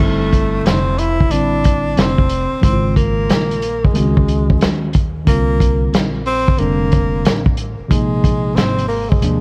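A breathy tenor saxophone carries the melody in a warm subtone with vibrato, sitting close and intimate while a tape echo trails behind its phrases. This mellow, cool jazz-hop cut from a longer hip hop piece moves at 91 BPM in 4/4 with a lazy 16th-note swing. A worn, slightly out-of-tune tine electric piano supplies the harmony, moving through G9sus4, Ab9sus4, C9sus4 and Bb9sus4. Beneath it, a plucked upright bass with gut strings gives a woody, thumpy low end. Up front sits a vintage drum kit of kick, snare, hi-hat and crash, muffled and lo-fi with dark cymbals, a tight kick and a gritty 12-bit sampler texture. The whole mix has a dark production with vinyl crackle, light reverb and small-room ambience, and every part plays from 0.0 to 9.4 seconds.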